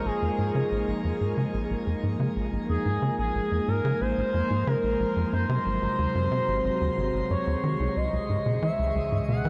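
Ambient, sequencer-driven space music in Bb minor at 91 BPM, this hypnotic, cosmic fragment is cut from a longer piece and floats in a wet shimmer reverb. An up-front, punchy sequencer bass drives a riff with filter-plucked sawtooth and square tones edged by ring modulation and tape echo. Above it, a sweeping resonant pad holds sustained chords with a detuned, warbling vintage character and lush chorus. An expressive synth lead carries the melody with a smooth, wave-folded voice, vibrato, chorus and tape echo. Near the end, after the harmony moves to C#m, a pulse-width-modulated analog drone enters in the background at 8.6 seconds with chorus and phaser. It is followed at 8.7 seconds by a faint, twinkling granular texture with bright, octave-up sparkle.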